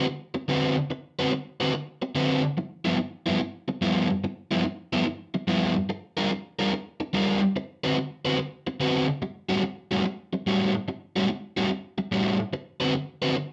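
Gritty and laid-back, this short blues passage, taken from a longer piece, rolls along in a swung 4/4 feel. A single electric guitar carries the whole solo from 0.0 to 13.4 s, its picked, overdriven tone crunchy and sitting up front in the mix. The guitar ranges from G2 up to B4. The harmony moves from D6 through G6 and a darker Gm7, returns to D6, then reaches A6 before settling back on D6 at 12.5 s. A small room's reverb wraps the playing in a short, wet ambience, giving the impression of a group performing live together in one space.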